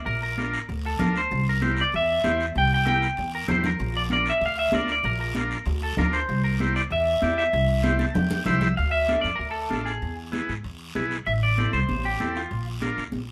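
Cumbia at a brisk 193 BPM, this danceable, passionate excerpt sets a twangy, spring-reverbed clean electric guitar melody up front over woody pizzicato upright bass, bright hard-hand congas, a raspy close guiro and a buzzy vintage combo organ with light vibrato entering at 0.4 seconds, all in a small room, as a drum fill and organ fill at 7.8 seconds lead into a new section moving from Dm through E and Am7 before the guitar stops at 12.7 seconds.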